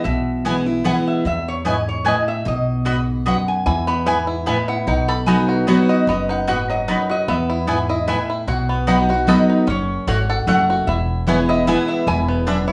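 An up-front, full-bodied picked dreadnought acoustic guitar drives this joyful bluegrass cut from a longer piece at 150 BPM in 3/4 and E major, with a nasal, metallic slide lap resonator guitar carrying the melody over thumpy pizzicato upright bass and woody double-string mandolin stabs, a bright, twangy fingerpicked banjo joining the melody at 3.7 s, set in a moderate small-room reverb.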